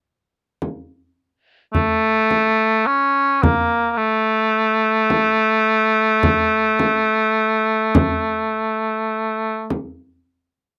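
A frame drum opens this short cut from a longer Caucasian folk lament, entering at 0.6 s with a close, dry, acoustic sound placed up front. At 1.7 s a cor anglais takes the solo melody, its warm, vintage tone carrying a light vibrato in a classical style. The line stays low, moving between A3 and C#4 in A major, and sits a little louder than the drum at the front of the mix. At 53 BPM in a loose, rubato 4/4, the mood is solemn and mournful. The close 1970s-style studio sound has little reverb, and the drum plays on until 10.0 s, shortly after the cor anglais ends.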